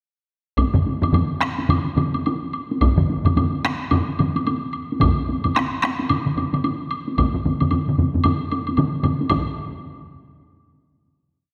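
Up front, a solo taiko drum struck with heavy sticks carries a repeating pattern with a vintage, band-limited tone, driving this short, ceremonial Japanese traditional taiko ensemble piece in 4/4 with a swung, uneven pulse that speeds up throughout. Around it, two taiko ensemble parts play heavy-stick taiko phrases with a close and dry sound, a third ensemble uses hard sticks in a small-room repeating pattern, and a woody woodblock ticks out its own repeating figure. The whole group sits in a concert hall reverb and gathers toward a final hit at 9.3 seconds.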